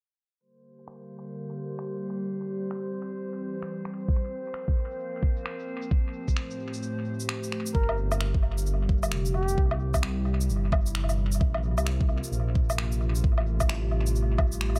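An overdriven, knocking electronic kick sits up front in this nocturnal, ghostly future garage cut from a longer piece, entering at 4.1 s at 131 BPM with a 16th-note swing in G dorian, while overdriven shaker, finger snaps and woodblock ride a filter sweep through dub echo from the start. A warbling, nostalgic tape-like pad holds chorused, phased chords that pump against the beat as a glassy texture of drifting overtones hovers high in the opening half. At 7.7 s a deep, rumbling detuned saw bass arrives with its own pumping, and a veiled bucket-muted trumpet plays a brief solo line with light vibrato, 12-bit sampler grit and analog delay, all within a low-passed, echo-heavy mix.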